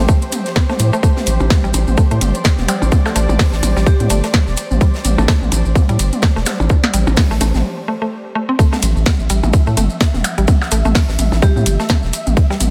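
Minimal techno at 127 BPM in A minor, hypnotic and clinical, built on a tight, up-front electronic kick and a deep, saturated sub bass under a woody, chorused synth pluck riff with dub echo and cassette tape colour, crisp snare and metallic hats from a booming analog drum machine, electronic toms and percussion blips, background maracas, a distant hall kit of bright cymbals and fat snare, a flickering grainy texture and blurred granular cloud pad, and brief ringing vibraphone notes at 3.9 and 11.4 seconds, with a break at 7.6 seconds before the drop at 8.6 seconds shifts the harmony from Am7 to A7(no3).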